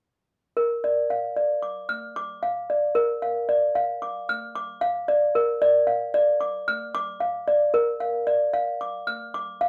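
In an unhurried 3/4 at 75 BPM with a straight feel, this tender, innocent classical lullaby in Bb major is played by a solo toy piano from 0.6 to 9.7 seconds, ranging from Bb4 to F6 and tuned to A4 = 442 Hz. The instrument sounds clanky and bell-like, slightly out of tune, with the knock of wooden hammers and an airy edge, and it sits up front. Close, detailed miking and a nearly dry room keep every note intimate in this short excerpt cut from a longer piece.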